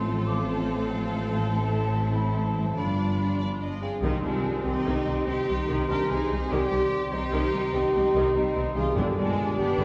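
In a rolling compound 12/8 pulse, this heroic, adventurous stretch of film score opens mid-phrase with a lush violin section carrying the melody with expressive vibrato and portamento, while a second, more distant violin line and a silvery, pure-toned flute trace supporting lines behind it. Violas fill the middle with smooth, even accompaniment, cellos and double basses anchor a rich bowed bass, and a dark, tight trombone section holds very quiet sustained chords as a ringing concert harp spins soft arpeggios underneath. A mellow, roomy clarinet slips in at 3.8 s with its own background line, and at 4.0 s the music settles into C minor: a very quiet, punchy horn section adds sustained chords, a mellow trumpet punctuates with brief stabs, and timpani strike a close, short accent that returns near 9.0 s. The whole ensemble sits in a church or concert hall, bathed in a generous scoring-stage reverb that gives it a grand, cinematic sweep.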